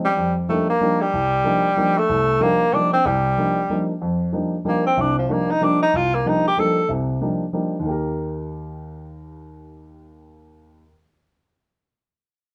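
Jazz in 3/4 at 187 BPM, swung on the eighths, with a spiritual, searching mood in this short excerpt cut from a longer piece. A tenor saxophone carries the melody from F3 to A4, its tone warm with vibrato, heard up front yet distant and roomy, dressed in plate reverb. It takes a solo turn in the section marked from 4.0 to 7.8 seconds, though the saxophone itself falls silent at 6.9 seconds. A baby grand piano supplies the accompaniment from C2 to Bb4 throughout the full 10.9 seconds, dark and mellow with a natural, short sustain. The harmony opens on F13sus4 and settles on Eb at 7.8 seconds, heard in a moderate club ambience with a dark, warm production.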